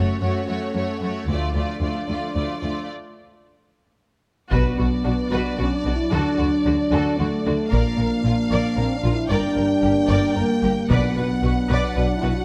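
Close, detailed microphones and light reverb frame this dramatic, heroic stretch of epic orchestral film score at 113 BPM in 3/4, cut from a longer piece. Two bowed violin sections carry the melody and a second line over lush viola accompaniment, with a cello bass in the background and tight, close-miked French horn chords, as the harmony moves from F#m to Dm before a break at 2.9 seconds. After a brief appearance at 1.3 seconds, the distant double basses return at 4.5 seconds alongside mellow trombone chords, a heavy-stick taiko ensemble and articulate calf-head timpani struck with hard mallets, carrying the music through Bm, D, A# and Gm before returning to Bm.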